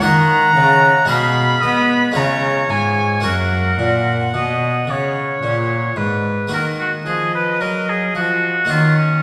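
This brief passage, cut from a longer baroque-style sonata movement in unhurried triple time, opens with all four players together: violin, oboe, harpsichord and cello. The violin carries the melody with a dark, nasal, reedy gut-string tone that sits distant in the room. The oboe weaves a clear second line just in front, with light vibrato and a soft attack. The harpsichord gives a close, dry and full plucked accompaniment on two sets of strings, while the cello supplies a warm, period-style bass. The harmony moves from D#m through G#m7/B and C# to F#, and the opening phrase begins again at 6.5 s on Ebm. A wet recital hall reverb gives the introspective, flowing music a resonant church or concert-hall setting.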